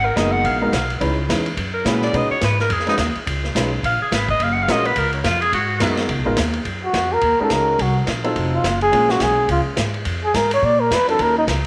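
Swinging and playful, this brisk 212 BPM small-group swing and bop excerpt in F# major opens with a bright, punchy alto saxophone solo over woody pizzicato upright bass, warm, woody upright piano and a gritty vintage drum kit with dark cymbals, before a breathy, whispered flugelhorn takes the melody up front from 6.8 seconds, all set in a wet spring reverb.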